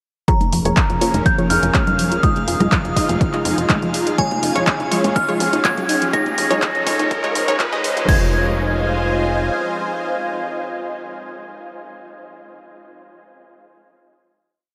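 Progressive house at 123 BPM in F minor, driving and expansive, built as a single long build that lands on a held final chord at 8.1 seconds. A punchy, overdriven four-on-the-floor kick drives the groove alongside programmed closed and open hats, claps and crash from an overdriven deep house kit, while vintage, band-limited congas play a tribal loop in the background. A tight, nasal sequencer bass gallops in sixteenth notes under a glassy, crystalline wavetable pluck whose three-step arpeggio loop drifts against the bar, and a detuned unison pluck with a cassette-tape tint adds bright dotted-rhythm stabs in open voicings. On top, an FM synth bell carries hook phrases, and a thick unison pad with chorus and phaser sustains chords moving from Bbm7/F through Fm7, Db/F and Eb7sus4/F. Filter sweeps open up the bell, the pluck and the arpeggio across the build, a very quiet riser enters at 2.5 seconds, and a calm sine texture of drifting overtones holds a high note far in the distance. 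The whole mix is soaked in a huge, dreamy reverb, with the pumping pad, bell and stabs ringing on after the drums stop.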